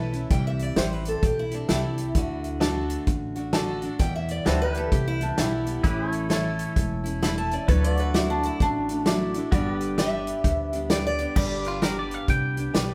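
Recorded live in a stone room with moderate reverb, this heartfelt, easygoing swung honky-tonk country piece sets a bright, boxy parlour acoustic guitar and a jangly, metallic tack piano over woody pizzicato upright bass and a punchy, up-front drum kit of crash, hi-hat, kick and snare, while a dreadnought acoustic guitar carries the picked melody solo, the piano adds a honky-tonk fill at 3.3 seconds, a clean pedal steel guitar played with fingerpicks and volume swells brings in sustained chords at 4.5 seconds, and a twangy, compressed electric guitar takes a short second-line solo from 11.7 seconds.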